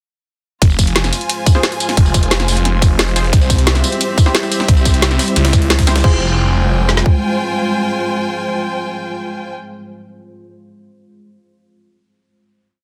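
Mechanical and futuristic, this is a complete dark technical drum and bass piece at 177 BPM in F harmonic minor, moving from Fm to C and back to Fm. At 0.6 seconds the drop arrives with two up-front electronic drum kits: one carries a tight kick and woody snare in broken-beat patterns, the other adds metallic hats, crash, tambourine and snare for tight technical drums, and a very quiet, gritty jungle sampler-style kit sits underneath with a high-tuned snare and looped breakbeat edits. A swirling, thick sawtooth bass, detuned and saturated with phaser and overdrive, plays chopped phrases in the low register and pumps against the kick. A rich, focused bowed string section with vibrato traces slowly shifting chords, while a deep, moody pad with chorus, built-in reverb and 12-bit sampler grit enters at 1.2 seconds and also pumps with the sidechain. Sparse, muted chord stabs with tape echo and chorus drift in the background. 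When the drop ends at about 6.0 seconds, the lighter kits fall away while the kick, snare and bass linger for about another second, and pad, strings and stabs hold the final Fm chord in a dense, heavily limited mix with light digital ambience.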